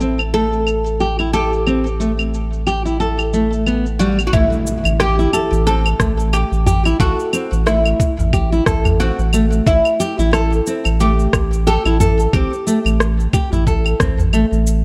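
Organic downtempo with an earthy, mystical mood, where a woody, plectrum-plucked oud melody and fingerpicked nylon-string guitar arpeggios, both with delay and finger squeak audible on the guitar, float over a round, deep analog bass with sidechain pumping and filtered electronic shaker, claves and rim click, before a gritty, thumpy kick and a very quiet impact arrive at 4.3 seconds and a small, band-limited udu joins in the background at 6.7 seconds, all in light reverb.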